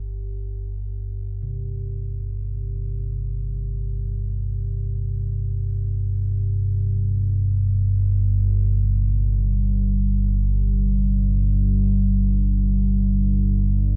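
A deep, ominous rumbling drone sits up front from the opening, its wave-folded tone wrapped in built-in reverb, while a quartz singing bowl fades in with soft, meditative arpeggios struck with a felt mallet, their pure, slowly beating ring dissolving into diffuse ambient delay until 8.2 seconds. This unsettling dark ambient fragment drifts in free time over a single suspended chord in a small, lightly reverberant room. At 13.3 seconds a moody, detuned pad with chorus slips in, barely audible, beneath the drone.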